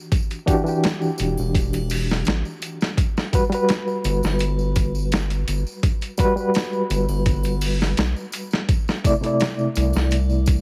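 Hypnotic and cinematic, this 84 BPM trip hop excerpt pairs a bright, reedy electric piano with fast tremolo and tape echo over gritty, overdriven boom bap sampler-style drums with a thumpy kick, background tambourine and triangle, and a round analog bass entering at 1.2 s, moving through Em9, Gmaj7 and C69 beneath a heavily compressed radio sound with vinyl crackle and light reverb.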